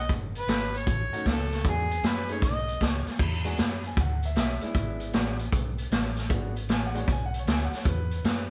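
A vintage drum kit sits up front in this rollicking, swaggering electric blues shuffle at 155 BPM in E mixolydian, its punchy kick, medium-tuned snare and dark cymbals carrying a rolled-off top beneath a swung 4/4 groove. A mellow harmonica with vibrato leads the melody until 3.0 seconds over a round, foam-muted fingered electric bass, while a brilliant concert grand piano with long sustain enters at 1.1 seconds to accompany. Light reverb gives the excerpt the feel of a band playing live in one room, moving through chords such as B7sus2 and E9.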